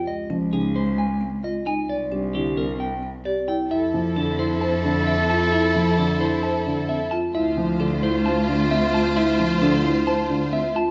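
A clean, picked electric guitar melody and mellow, woody marimba arpeggios open this hypnotic, propulsive minimalist classical passage, joined almost at once by a rich, expressive cello bass with vibrato and portamento and a dark concert grand piano accompaniment. At 3.7 seconds a clear, vintage-toned clarinet adds a soft-attacked second line while a smooth, bowed studio string ensemble holds sustained chords. A moderate large studio reverb surrounds the mix, whose top end is rolled off above 7.6 kHz, and the passage is cut from a longer piece.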